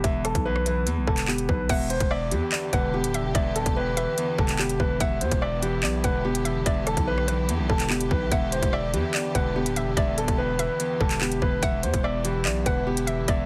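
Through a heavily compressed, radio-like sheen, this menacing, cold half-time drill excerpt sets a natural concert grand piano melody with delay over a ringing Celtic harp, a growling, buzzy 808 bass and an up-front drill kit of hard-clipped kick, crisp hi-hats, handclaps, rim clicks and crash, before a hollow, detuned square-wave pluck with chorus and delay and a lush, bowed symphonic string section join at 1.7 seconds.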